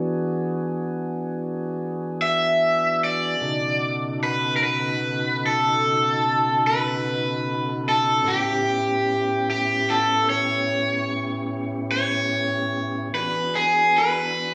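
A clean tonewheel organ opens this laid-back, gritty slow blues, holding clear sustained chords through a slow rotary speaker at 49 BPM in a straight 12/8. At 2.2 seconds a bright, overdriven electric guitar enters up front with a picked melody, while the harmony moves from E7 to B7 and A7 before returning to E7 near 13.1 seconds. Wet hall reverb surrounds both parts, lending this fragment of a longer piece a spacious, churchlike air.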